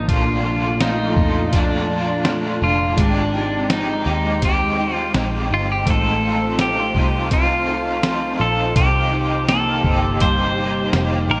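A straight, unhurried 4/4 pulse comes from a lo-fi, sampler-style drum kit that sounds pitched down, compressed and muffled, with a thumpy kick, a medium-tuned snare and hi-hat washed in gated reverb. This brief dream pop passage, cut from a longer piece, feels dreamy and blissful as it moves through Bbmaj7, Abmaj7, F7/A and Cm7. Up front, a bright, twangy pedal steel guitar carries the melody with fingerpicks, slide and volume swells, trailed by delay. A clean, picked electric guitar plays arpeggios through analog chorus and delay, while an overdriven semi-hollow guitar adds hollow-body accompaniment shimmering with tremolo and ensemble chorus. Underneath, a vintage foam-muted electric bass gives a dark, round, amped low end, and an ethereal, airy synth pad of detuned, wave-folded sawtooth and triangle tones holds mellow sustained chords in the background with its own chorus and reverb. 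The whole mix has a bright, 1980s-style digital polish, set in a moderate plate reverb.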